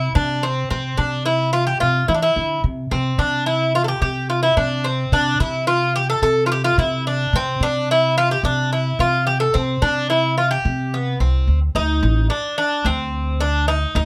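A metallic, picked Greek bouzouki on doubled strings, some strung in octaves, carries the melody up front in this stately, festive Turkish makam ensemble excerpt, joined throughout by a woody, pizzicato upright bass on steel strings, also close in the mix, moving in a straight 4/4 under light reverb before a new section arrives at 11.7 s.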